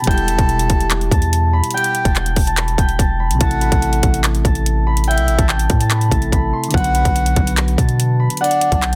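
A menacing, brooding half-time trap groove opens with a ringing, thumb-plucked concert harp melody over soft, mellow, chorused electric-piano-like synth keys and an up-front trap kit of hard-clipped kick, metallic hi-hats and handclaps. Almost at once a deep, sine-toned 808-style bass enters with long decaying notes, while a breathy flute-like synth lead with vibrato, chorus and delay carries a second line until 8.8 s. The harp and keys sit behind a low-pass filter in digital ambience, and the dense, heavily limited master keeps this cut from a longer piece weighty as it moves through Em, Am and Bm.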